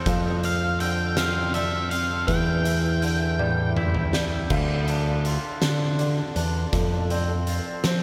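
A dreamy, reverb-soaked mix opens this brief, cinematic post-rock excerpt in a slow 6/8 at 54 BPM, its melancholic mood carried by felt-muted upright piano arpeggios with audible action noise sitting in the background, alongside twangy, clean electric guitar arpeggios bathed in spring reverb and delay. A growling, overdriven picked bass and an oversized low-tuned drum kit with a fat snare, punchy kick and gritty saturation sit up front, while a dark octave-fuzz lead guitar states a distorted melody from 0.4 to 3.7 seconds. A drum fill from 3.4 seconds carries the music into a new section at 4.5 seconds, moving through Dm and F.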